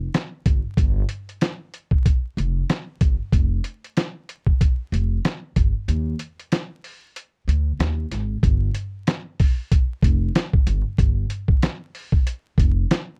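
Gritty and tough, this boom-bap hip-hop excerpt moves at 94 BPM in 4/4 with a swung sixteenth-note feel. A dusty soul sampler-style drum kit sits up front, its compressed, tape-warm sound built on a thumpy kick, a medium-tuned snare and hi-hat. An acoustic upright bass, plucked pizzicato on steel strings, carries the low end between F1 and Eb2 with a woody tone, also placed close and forward. A break arrives from 5.9 to 8.4 seconds before the music moves into a new section. The production is dark and dry, with little reverb and a layer of vinyl crackle adding grit.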